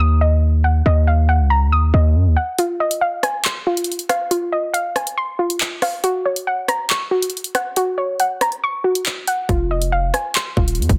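A soft, dark, rounded pluck with chorus and a low-pass filter opens this tense, ominous drill fragment at 139 BPM in a half-time feel in F phrygian, alongside a punchy, heavy 808-style bass that drops out at 2.4 seconds as an electronic drum kit of hard-clipped kick, hi-hat, handclaps and rim click enters at 2.6 seconds beneath the continuing pluck, until the bass returns at 9.5 seconds over a dry, dense, heavily limited mix.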